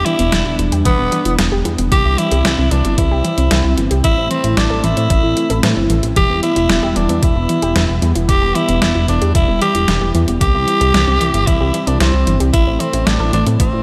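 Set in moderate concert-hall reverb with a big arena sound, this nocturnal, nostalgic synthwave excerpt puts a raspy, growling tenor saxophone up front, its vibrato-laden melody carried on tape echo. Beneath it, a shimmering pulse-width pad holds sustained chords with sidechain pumping, a glossy chorused synth bass sits forward, and a warbly, lo-fi dusty pluck spins chorused, delayed arpeggios in the background. An overdriven, detuned 8-bit drum machine supplies hi-hat and snare in a small room, joined at 0.9 seconds by a thumpy, overdriven electronic kick as the chords cycle from Em through C to Am.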